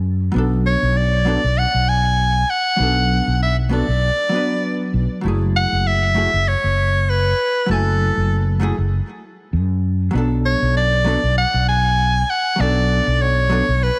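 A round, amped fretless electric bass opens this smooth sunset chillout piece, sitting up front in a low register at 98 BPM in 4/4 with a swung 16th-note feel. At 0.3 seconds a vintage hollow-body jazz guitar joins with dark, clean, picked and compressed accompaniment, moving from Bm7 to F#m9 and back to Bm7. At 0.7 seconds a clear soprano saxophone enters up front and carries the melody as a jazz-style solo, with vibrato, scooped notes and a touch of delay. Light studio reverb gives the parts a gentle sense of space, and the mood stays warm across this short passage cut from a longer piece.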